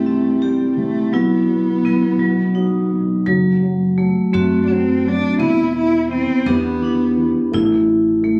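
A bright, metallic vibraphone struck with hard mallets, its motor off, rings up front with arpeggios and a slapback echo in this reflective, intimate acoustic folk-pop ballad. It moves at a slow 56 BPM in a straight 6/8, counted in dotted quarters, through a fragment cut from a longer piece. A bowed cello carries the melody close and up front, played sul tasto with vibrato and a soft attack, until it stops at 7.3 seconds. Beneath it, a dark, boxy upright piano accompanies with a mellow, long sustain, while a woody pizzicato upright bass on gut strings enters at 3.3 seconds as the second section begins. The harmony drifts from C through Bsus4 and B to F#dim, Em7 and A5. Captured on a phone in the room, the sound carries club reverb and compression.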